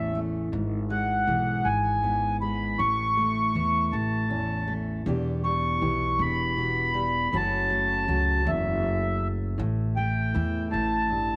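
From the first moment, a reedy, mellow accordion carries the melody up front over a full-bodied, fingerpicked steel-string acoustic guitar and a woody, thumpy pizzicato upright bass with dark gut strings. This is reflective, intimate acoustic folk for a duo or small band, moving unhurriedly in 6/8 at 53 BPM through chords of A, E/G#, Em and F#m before settling on A5 near 9.6 seconds. The accordion's slow beating lends a gentle shimmer, and light reverb with small room ambience keeps this brief passage close and homely.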